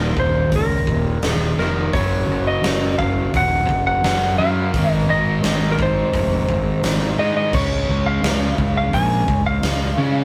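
A rough rehearsal-room recording with moderate studio reverb captures this sunny, driving classic rock excerpt, in which a dark, slightly broken-up, compressed slide guitar played with fingerpicks carries the melody over a growly, overdriven fuzz bass sitting up front, a crunchy double-tracked guitar riffing in the background through spring reverb, and a huge arena drum kit that enters at 0.2 s with a fat snare, punchy kick and bright cymbals.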